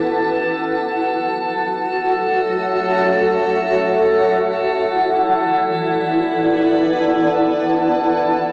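Serene and warm, this ambient excerpt floats in free time, tuned to A4 = 443 Hz, and drifts from E7sus4 to F#m7 and back to E7sus4 at 4.5 seconds. A granular cloud pad sits up front, holding sustained chords with a blurred, detuned, evolving tone built on triangle waves, shaped by a moving notch, slow attack and long release, and softened by its own reverb and cassette tape coloring. Alongside it, a glassy texture of drifting overtones made from sine tones stays calm and sustained, thickened with chorus and its own reverb and also run through cassette tape. A very quiet, pure FM synth bell plays gentle arpeggios only in the opening 1.6 seconds, its fast attack decaying into a long release with chorus and phaser. The whole piece sits in a wet small room with a short reverb tail, heard as a home cassette recording with a small speaker sound.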